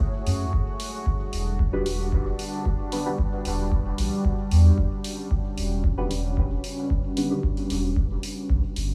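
A soft, phased chord stab with dub echo and chorus sounds from 1.7 s to 7.4 s in this hypnotic, cavernous dub techno excerpt at 113 BPM, where a tape-warm analog kick and layered dark hi-hats sit with a round sine sub bass and a detuned, wave-folded sawtooth pad, both bass and pad pumping to the sidechain, as the harmony moves from F#madd9 to Em9 in a small, lightly reverberant room.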